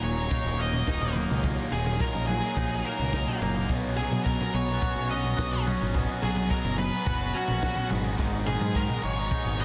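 Indie rock in Eb minor at 107 BPM, this bittersweet, moody passage is cut from a longer piece and moves in a straight 4/4 through Ebm, Bsus2 and Abm. Up front, an octave-fuzz lead guitar carries the melody with a warm, distorted tone, its picked line colored by delay. Beneath it, a raw garage guitar plays a bright, overdriven picked riff, while a twangy electric guitar sits in the background with a clean, compressed sound touched by subtle chorus and delay. A growling fingered electric bass adds a direct, amped low end with overdrive, and a compact cocktail drum kit enters at 0.3 seconds with a dry, acoustic sound, a punchy kick, a high-tuned snare and toms. The whole mix is dreamy and soaked in a moderate cathedral reverb with a long tail.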